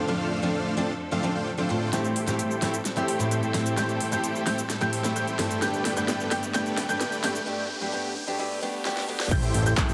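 Powerful and euphoric, this festival progressive house cut at 130 BPM in A minor opens on an up-front picked steel-string acoustic guitar, a huge detuned supersaw riff and distant, biting strings, all pumping under sidechain, before a bright baby grand piano and an overdriven big-room kit with metallic hats and handclaps join at 1.9 s for a long filtered build-up with a riser, a break at 7.5 s, and an impact at 9.3 s where a punchy kick and fat analog bass land beneath a huge ambient reverb.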